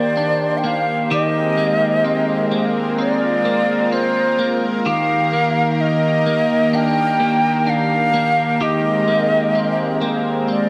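Ethereal and floating, this dream pop passage, cut from a longer piece, sets an airy silver concert flute carrying the melody with expressive vibrato and a touch of digital delay over a thick, warbling unison pad that holds detuned sawtooth chords through a chorus effect. A clean electric guitar picks compressed, scooped arpeggios, colored by analog chorus and digital delay, as the harmony sways between Ebmaj7 and Abmaj9. A wet scoring stage reverb and a dark, warm production wrap the whole 10.7 seconds in digital ambience.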